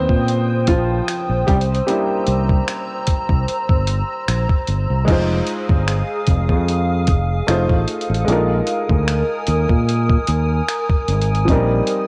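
A lightly swung 16th-note groove at 75 BPM in 4/4 drives this late-night, longing contemporary R&B excerpt in F dorian. A gritty, compressed sampler-style drum kit with a thumpy kick, hi-hat, finger snaps and crash sits up front beside a round, punchy fingered electric bass. Above them, an intimate baby grand piano with audible action noise takes a solo through the first 5.1 seconds. Throughout the excerpt, a glassy, ethereal FM pad warbles through ensemble chorus, and in the second section it moves over changes from Fm7 to F7 and Bb7sus4, all on a home cassette recording with light reverb.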